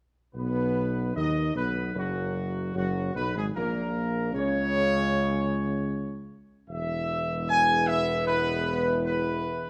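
A regal, majestic classical ceremonial fanfare in B major at 76 BPM, this excerpt from a longer piece has a tight, dark trumpet section carrying the melody up front while a mellow French horn section with light vibrato and a soft-edged, background trombone section hold sustained chords. A roomy tuba anchors the bass, and the harmony moves from B to A#m at 3.5 seconds and on to E at 6.7 seconds. Close, detailed microphones capture the brass in a recital hall with moderate reverb and a faint mains hum.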